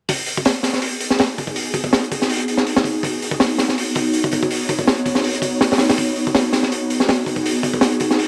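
A dark, lush hall reverb wraps this raw, nostalgic drum and bass fragment, cut from a longer jungle piece with a gently swung groove. A crunchy, saturated breakbeat kit sits up front from 0.1 s, with a punchy kick, a high-tuned snare and gritty hats whose top end is rolled off. At 0.9 s an ethereal, airy pad of detuned sawtooth and triangle voices enters beneath it, holding mellow chords with a slow attack, long release and ensemble chorus.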